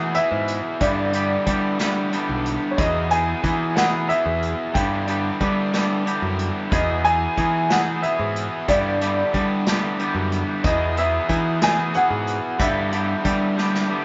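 A dark, woody upright piano carries the melody with audible action noise and a slightly detuned, intimate tone, while an overdriven garage guitar and a clean, twangy fingered electric guitar play riffs over a growly, up-front picked bass and an acoustic drum kit played with bundle sticks, in an upbeat, carefree indie rock excerpt at 61 BPM in 6/8 that alternates Emaj7 and G6, is captured as a band live in one room with studio reverb, and closes on a drum fill at 13.6 seconds.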